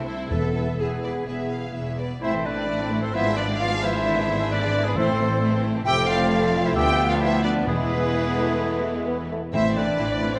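A restless, dramatic passage cut from a fast romantic orchestral movement opens with the full string body at once: a lush first violin section carries the melody with a soft-attacked, expressive vibrato, while focused second violins and smooth, even violas fill in beneath. Close, rich cellos and distant, clear double basses anchor the bass, and a roomy French horn section holds sustained chords in the background. Timpani struck with medium mallets on calf heads enter briefly and dryly from 0.3 to 1.0 seconds and return from 5.0 seconds to drive the harmony toward its close. At 2.2 seconds the woodwinds join with supporting lines: a pure, silvery flute sharing the melody's register, a clear oboe, and a soft, distant clarinet. A mellow, vintage-toned bassoon adds a short accompanying figure between 8.1 and 9.4 seconds as the minor-key progression moves through diminished and dominant chords back to its home chord, all set in a wet concert hall reverb.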